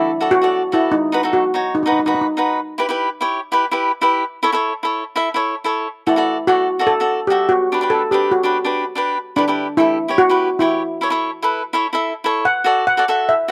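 Calypso excerpt at 146 BPM in D major with a bouncy, festive air, where a metallic, shimmering lead steel pan played with hard rubber sticks carries the melody up front, sits out from 2.3 to 6.1 seconds and then returns, while a crisp, picked acoustic cavaquinho with slapback echo plays accompaniment throughout, all captured outdoors with a dry sound.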